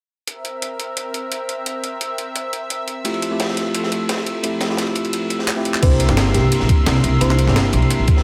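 A woody pizzicato upright bass sits up front from 5.8 s, arriving with a thumpy, gritty electronic kick as this soulful, dreamy liquid drum and bass excerpt hits its drop. From the start, a lush, detuned unison pad with chorus and sidechain pumping holds sustained chords over a compressed, pitched-up sampler-style breakbeat kit of crash, handclaps, hi-hat and snare, with the harmony moving from C7 to Fmaj7 and back to C7. At 3.0 s a clean, bright tine electric piano with digital delay adds accompaniment beside a dark, crunchy second breakbeat kit of ride and high-tuned snare with high-pass filtering, and after a drum fill a sparkling FM electric piano with chorus and delay plays a brief melody in the background, set in a small room with light reverb.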